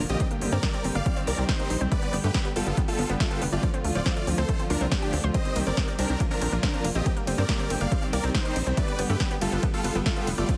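Dark, lush bowed strings hold sustained chords in the background as a round, nasal analog pluck arpeggio with chorus and digital delay and a tight, saturated sequencer bass open this driving, euphoric uplifting trance excerpt at 140 BPM, all three pumping against the punchy electronic kick that sits up front from 0.2 seconds. A huge, detuned supersaw lead carries the bright melody with its own delay, while a big-room dance kit adds a punchy snare, crisp hi-hats and ride cymbal. The chords move through Gm, Cm, G, Dm and Bb under a heavily compressed, radio-style sound with little reverb.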